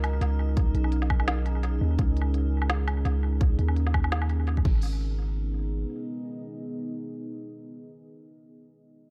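A half-time drum and bass groove at 169 BPM in 4/4 carries a 16th-note swing of 56%, setting a tense, heavy mood in G# minor in this short cut from a longer piece. An organic electronic drum kit with a woody snare, crisp hats, crash cymbal and woodblock plays through low-pass filtering, small room ambience and tape echo until 4.7 seconds, joined at 0.6 seconds by a hard-clipped electronic kick sitting up front. Underneath, a long, deep 808-style sine bass with a fast attack and mellow decay runs a filter sweep through the opening passage before fading out by 5.9 seconds. A moody, full-bodied pad of detuned sawtooth unison and sine sub octave holds sustained chords, moving from C#sus2 to G#m, with slow attack, chorus, reverb and sidechain pumping, lingering alone until 8.4 seconds. In the background, an eerie, metallic FM drone on A#4 hovers with chorus and reverb, and the overall mix leans heavily on echo while staying dry on reverb.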